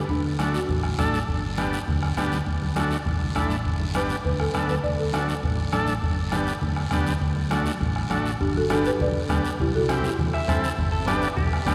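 A buzzy, heavily vibrato-laden combo organ sits up front in this joyful, danceable cumbia at 202 BPM in G major, with a woody, rustic folk marimba singing short melody phrases, a dark, round fingered electric bass and a soft-beater bombo holding the low end, bright congas in the background, a raspy guiro, and a twangy clean electric guitar slipping in at 10.3 s, all bathed in the long wash of a cathedral-like hall.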